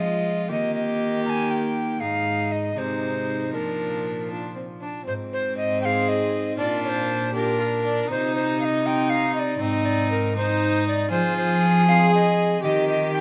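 Festive and courtly, this short cut from a longer renaissance-style consort dance moves in a straight 6/8 at 79 BPM, with an airy, chiffy tenor recorder carrying the melody up front over a nasal, gut-strung violin second line, a smooth-topped viola, a dark reedy cello bass and a ringing harp in the background, all in light reverb as the chords pass from Eb through Ab, Bb, Cm and Fm back to Eb.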